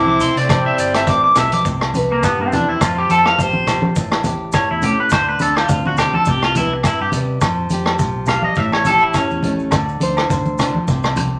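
A joyful, carefree highlife guitar band piece at 104 BPM in 4/4 opens with a breathy, distant alto saxophone carrying the melody over a raspy, gritty second alto line in the background. Both horns fall away at 1.3 s. Beneath them, a bright, fingerpicked nylon-string guitar and a dark, round fingered electric bass keep the accompaniment going. Up front, a twangy, slightly broken-up electric guitar with phaser plays arpeggios. A punchy, mid-forward vintage drum kit with kick, hi-hat and rim click sits with ringing, softly played congas, bell-like agogo and grainy maracas in the background, all set in a light 16th-note swing and tuned slightly low to A4 = 438 Hz. From 1.6 s a clean electric guitar solo rides over a progression of Cmaj7, Fsus2, A7 and Dm7 that returns through C5, Fsus2, A7 and Dm7 in C major, wrapped in moderate studio reverb, in this short cut from a longer piece.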